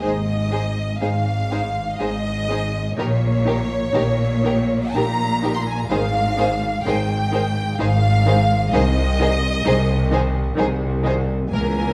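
A slow romantic movement for string orchestra in Ab major, this tender passage moves in a rubato 3/4 at roughly 57-66 BPM and is cut from a longer piece. Up front, a close violin section carries the melody between Db5 and C6 with smooth, even bowing and vibrato, while a second, more distant violin section holds a supporting line beneath it. The viola section sits in the background with accompaniment, and a close cello section and a clear, lush double bass section share the bass, all bowed with vibrato throughout the 11.9 seconds. The harmony settles on Ab at the start, leans toward Eb7 over Bb at 3.0 seconds, and returns home before closing on Ab over C. A moderate scoring stage reverb and a dark, warm production give the ensemble a rich, enveloping glow.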